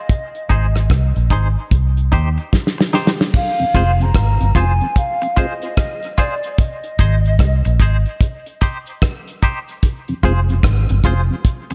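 A swung, hypnotic dub reggae groove at 74 BPM in F dorian is anchored by a dry, damped 70s drum kit and a round, foam-muted fingered bass sitting up front, with a drum fill at 2.5 seconds leading into the second section at 3.3 seconds, where a compressed, saturated cabasa joins. A distant, hollow silver flute carries the melody through dub echo until 8.2 seconds, while a twangy, clean picked guitar with tremolo and a mellow tonewheel organ on slow rotary speaker add echoing accompaniment over chords moving from Ab to Cm to Fm, and a filter sweep runs through the middle. The dark production has light reverb and a small room ambience, and the excerpt is cut from a longer piece.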